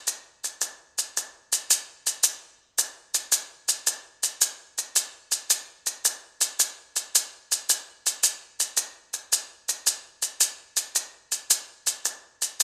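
Grainy, mellow acoustic maracas sit up front from the first moment in this rippling, warm excerpt of southern African traditional music, moving in a straight 12/8 at 110 BPM counted in dotted quarters and captured closely and in detail with little reverb for 12.6 seconds.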